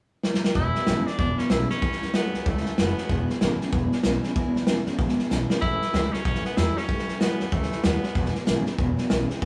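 A drum fill on the vintage kit opens this rowdy, upbeat rockabilly excerpt at 189 BPM with a swung feel in E mixolydian, and at 0.6 seconds an upright bass with woody, thumpy gut strings, a twangy, slightly broken-up electric guitar riff with tremolo, and a full-bodied picked dreadnought acoustic guitar in the background join the punchy drums as a bright tenor saxophone carries a vibrato-laden melody in two phrases over E7 and A7, all captured live in a small stone room with moderate reverb.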